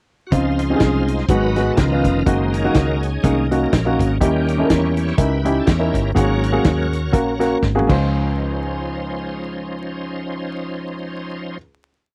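A dry, close recording in a 1970s studio style, with vinyl crackle and very little reverb, captures a short, jubilant piece of uptempo gospel at 123 BPM in 4/4, swung on the eighths and set in D-flat major. A bright, shouting tonewheel organ carries the solo through the verse, holding full sustained chords through a slow rotary speaker with chorus vibrato. An intimate baby grand piano sits up front with rhythmic, closely voiced chords, grace notes, a short sustain and audible action noise. A punchy, foam-muted fingered electric bass walks and runs beneath, sliding and using chromatic approach notes. The acoustic soul drum kit, mid-forward with a tight kick, medium-tuned snare and a rolled-off top, drives a two-beat praise groove, marks a fill from 7.6 seconds and stops at 8.0 seconds, leaving organ, piano and bass to ring out the final hit on a Dbmaj9 chord.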